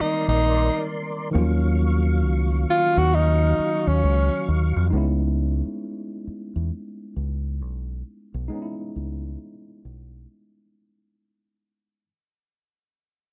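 R&B at a late-night, introspective 67 BPM with a swung 16th feel, this excerpt opens with a breathy tenor saxophone melody up front, its scooped notes and light vibrato touched by slapback echo until 4.5 seconds, over a slow-rotary tonewheel organ holding clear chords until 4.9 seconds, a worn, slightly out-of-tune electric piano with light overdrive, and a round, dark fingered dub bass that carries on through the fade-out until 10.3 seconds, all in a dry, close 1970s-style studio sound moving through Cm9, D#m9 and C#m9.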